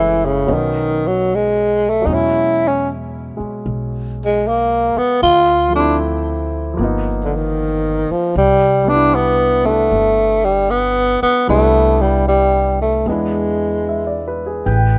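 Late-night and intimate, this swung jazz ballad puts a growling tenor saxophone up front, its breathy subtone, vibrato and scooped notes turning raspy at the edges over natural baby grand piano accompaniment and a woody pizzicato upright bass. The harmony moves from Badd9 through Dm7 and G7alt to Cmaj9 before an E7, and at 14.7 s a tight, mellow saxophone section arrives with sustained chords just as the piano stops. The rough home demo mix keeps the sound dry and close.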